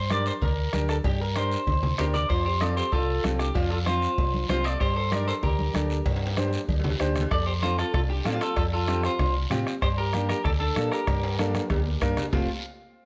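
A twangy, slightly broken-up electric guitar carries the melody through spring reverb and slapback echo in this joyful, danceable cumbia excerpt, backed by a round, dark fingered bass, a woody, boxy upright piano, a soft-beater bombo, ringing congas, distant cowbell and timbales and a raspy guiro, with a clean picked second guitar joining at 2.0 seconds and drum fills rolling in around 1.4, 6.1 and 11.1 seconds as the chords move between G minor and F.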